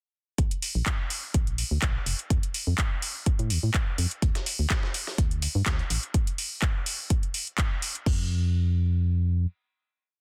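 The mix is dense and heavily limited, with little reverb, so every part sits close and dry in a short, euphoric piece of piano house with a feel-good swing on the sixteenths. A punchy, tape-warm electronic kick drives a steady four-on-the-floor pulse, joined by a house drum kit whose metallic hats, handclaps and crash mark out programmed hats and a backbeat from the first moments. Beneath them, an organ-like FM bass plays a hollow, dark, syncopated riff with a fast attack and a decaying tail, pumping against the kick through sidechain compression. Between 4.2 and 6.0 seconds, a gritty, sampler-style soul drum kit slips in quietly beneath the groove, adding a looped, edited breakbeat of filtered hats and a medium-tuned snare. The drums stop at 8.2 seconds, leaving the bass to ring out on a final note that closes the piece.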